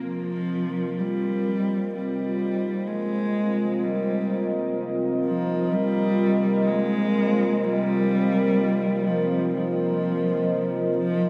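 A bowed cello, dark and woody with vibrato and a sul tasto softness, plays a close, narrow melody between F3 and Ab3 through a delay, while a deep, warbling pad of sawtooth and sine voices with a sub octave holds a sustained Bbsus2 chord above it from the first moment. This desolate, ominous ambient passage moves at 63 BPM in 4/4, tuned to A4 = 442 Hz, and the pad, with its slow attack, chorus and vintage moodiness, sits up front beside the single cello player. A huge, wet reverb with a 7.4-second decay surrounds the 11.3-second excerpt, cut from a longer piece.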